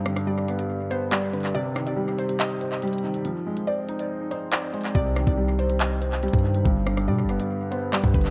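An echo-heavy mix with light reverb and a touch of studio ambience frames this ominous, menacing drill excerpt at 141 BPM in a half-time 4/4 feel, set in C harmonic minor over a G, Cm, Fm7, Cm, G progression. A dark, mellow baby grand piano with long sustain and tape echo sits up front alongside an electronic drill kit of knocking kick, crisp hi-hats, handclaps and rim clicks. A warbling, lo-fi pluck colored with chorus, phaser and filter sweep hovers quietly in a higher register, while a barely audible downlifter opens the track and a punchy, heavy 808-style bass enters at 5.0 seconds.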